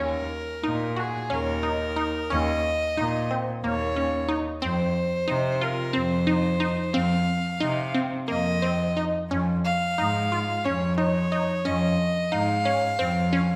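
From the first beat, a bright violin, a squelchy, resonant synth pluck and a clear, earthy cello sound together in this restless, pensive piece of contemporary chamber music in 7/8, moving at 180 BPM in eighths with a straight feel. The violin carries the melody with light vibrato and an airy bow, the cello holds the bass up front as a single close player, and the pluck's fast-attack sawtooth arpeggios decay through a filter sweep and phaser. A wet recital hall reverb surrounds the trio as the harmony moves from Eb7(no3) to F5 at 4.6 seconds and Dbadd9/F at 9.3 seconds, before this cut from a longer work ends at 13.6 seconds.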